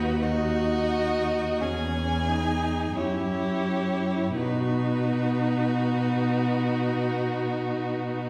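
All four bowed strings sound together from 0.0 s in this serene, lyrical fragment of a slow romantic string quartet movement in B major, cut from a longer piece. The pace is unhurried, about 41-48 dotted-quarter beats per minute in 12/8, and the rubato lets the time breathe. A smooth, close first violin sings the melody with even vibrato, while a focused second violin, set more distantly, carries an inner line beneath it. The rich viola fills the middle with a vibrato-laden accompaniment, and an up-front, clear cello anchors the bass. The harmony drifts from B over D# through C# minor and F# to rest on B at 4.4 s, and the excerpt ends at 8.3 s. A generous scoring-stage reverb places the quartet further back in the room, giving the sound a soft, spacious glow.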